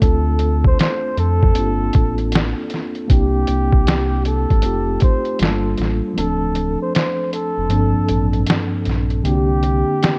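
A relaxed 78 BPM groove in 4/4, swung on the sixteenths, sets up this nostalgic, melancholic lo-fi hip hop excerpt in G minor, cut from a longer piece. Up front, a compressed, pitched-down sampler-style drum kit lays a muffled, thumpy kick under a medium-tuned snare and hi-hat, while a deep, full sine sub bass with an added octave holds sustained, fast-attack notes until 9.8 seconds. A mellow tine electric piano, clean and heard through its built-in speakers, carries chords such as Dm7, Gm11 and F9, softened by cassette tape and a low-pass filter. Over it, a solo flugelhorn plays a close-miked, jazz-style melody with light vibrato and scooped notes, dulled by a low-pass filter and trailed by tape echo. At 6.2 seconds the kick drops out for the second section, and the harmony eventually settles on Csus2. The whole recording sits in digital ambience with a worn, warbling old-tape character, drifting pitch, and a top end that stops at 10.6 kHz.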